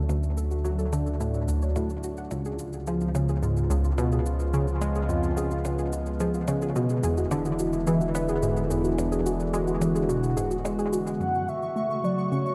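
Ambient, sequencer-driven space music in F# minor at 108 BPM, hypnotic and mysterious, this excerpt rides a tight, driving sawtooth sequencer riff up front over a deep sine sub bass, while a resonant, wave-folded pad sustains chords moving from D through C#7 and E7, a soft round pluck arpeggiates in the background, and electronic percussion blips and cabasa tick along quietly with tape echo. The pad, pluck arpeggio and percussion fade in together over the first 11.2 seconds, all under a huge ambient reverb. At 11.2 seconds the harmony settles on F# minor as a horn-like, warbling vintage lead enters with vibrato, and at 11.4 seconds a bright, pulsing gated texture joins high on C#6.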